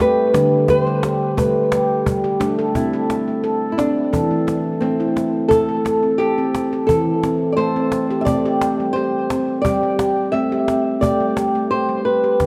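Gentle and hypnotic, this meditative world piece with tuned percussion moves at 87 BPM in a straight 4/4, centered in A minor and cut from a longer piece. A handpan carries ringing stainless-steel arpeggios from D3 to A4, struck with the fingertips and placed up front with a boxy small-room character and a diffuse ambient delay. Above it, a thumb-plucked flamenco guitar sings the melody between C4 and E5, its acoustic tone marked by audible finger squeak and washed in the same diffuse delay. A snappy cajon with snares sits close but low in the mix, keeping the pulse throughout. The harmony opens on G, settles into A minor at 2.8 seconds, shifts to C5 at 8.3 seconds and returns to G. A wet scoring-stage reverb with a 2.0-second tail surrounds the ensemble, lending the whole performance a spacious, floating sense of place.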